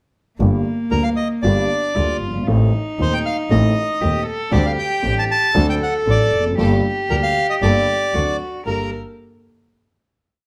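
A marcato tango pulse in four, rubato at 116 BPM in G minor, drives this passionate and melancholic complete piece: an intense, clearly bowed double bass with vibrato and a woody, long-sustaining upright piano carry the rhythm from 0.4 s, while a floating, soft-attacked sul tasto cello sings a counter-melody beneath a reedy, up-front bandoneon whose song-like motifs enter at 0.9 s, and a very quiet, earthy chamber string section adds marcato stabs from 4.5 s, all set in a moderate large-studio reverb before the closing G minor add-nine chord at 8.7 s.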